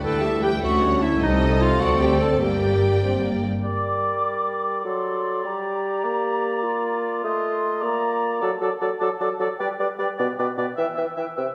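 A quick, cheerful classical-period orchestral movement in a lively 6/8 at 101 BPM, it opens in G minor with vibrato-rich bowed violins carrying the melody and second line and violas accompanying over warm cellos and lush double basses, a mellow horn section holding chords and a distant clarinet weaving a countermelody. At 3.6 s the strings and horns give way to the woodwinds: a pure, crisp-edged flute group and an up-front oboe play in the upper register while a solo bassoon accompanies below, and the music brightens to G major from 8.4 s. A wet recital-hall reverb lends the whole passage a roomy, concert-hall glow, and it is cut from a longer piece.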